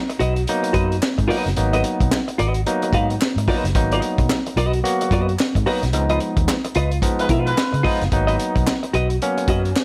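A dry, up-front funk excerpt in G# dorian at 110 BPM with a swung sixteenth feel and a hypnotic, cool mood, where a barky tine electric piano stabs through tape echo over a crunchy, saturated breakbeat kit with a high-tuned snare, a round foam-muted fingered bass, and a clean electric guitar bathed in lush chorus, hollow group handclaps join at 1.0 s, and a mellow, distant horn section slips in briefly at 7.2 s during a band accent on C#9 before the G#m7 returns.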